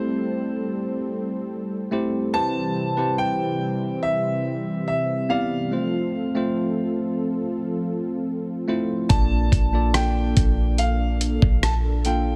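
Contemporary R&B at a smooth, romantic 71 BPM in C major, this fragment opens with a brilliant, open grand piano melody trailing a digital delay over a bell-like, clean tine electric piano and a soft, chorused sawtooth analog pad moving through Am7, Cmaj7 and Fmaj7, until at 9.1 s a deep, boomy 808-style bass on Bb1 and a gritty, compressed sampler-style drum kit of thumpy kick, hi-hat and rim click arrive up front under the Bbmaj7 chord, all set in digital ambience.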